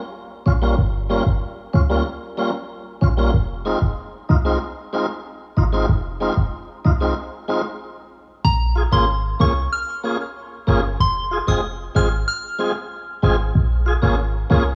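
Worn, warbling cassette tape with faint mains hum and light reverb colours this tough, bouncy dancehall excerpt, cut from a longer piece. A full, lightly overdriven tonewheel organ with key click and fast rotary speaker sits up front beside a deep, boomy 808-style bass; both enter at 0.5 seconds and drop out for a brief stop at 7.8 seconds. At 8.4 seconds a soft, pure FM synth bell carries the melody through chorus, phaser and tape echo as the harmony moves from Bbm7 to Fm.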